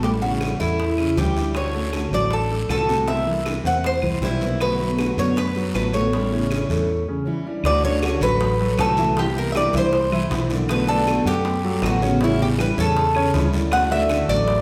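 A relaxed, danceable Cuban son in the guajira style opens at a brisk 158 BPM in D major, with the metallic, double-strung Cuban tres carrying the melody up front. Around it, a bright, jumbo-bodied steel-string guitar picks the accompaniment, a concert grand piano with deep bass rolls out arpeggios, and a dark, round fretless electric bass sits up front, direct and amped, underneath. Tight, high-tuned bongos played with hard hands stay very quiet, a raspy guiro sounds close and dry, and woody claves join in the background at 0.4 seconds. The harmony cycles through A7, Dmaj7, C7 and Bm7. A brief break at 6.9 seconds leads into the second section at 7.7 seconds. The whole excerpt sits in a wet recital-hall reverb with a churchlike sense of space, and it is cut from a longer piece.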